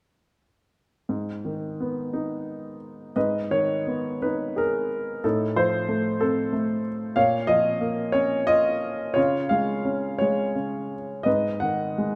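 Dark and melancholic, this short cut from a longer classical piece sets a lyrical solo piano in a gently flowing 6/8, with the dotted-quarter pulse moving between 55 and 64 BPM and a rubato feel that lets phrases breathe. A clear concert grand plays alone from 1.1 to 12.2 seconds, ranging from G#2 up to F#5 in G# dorian, its deep bass anchoring the lines while its natural, up-front tone keeps each note distinct. The short sustain gives the playing a somewhat intimate, unclouded character, set within a moderate recital hall reverb that adds a sense of space around it. A brief opening phrase gives way at 3.2 seconds to a longer passage that carries the rest of the excerpt. The harmony moves from G#m through F7/A, A#m and C# before settling back on G#m, reinforcing the pensive, sorrowful tone.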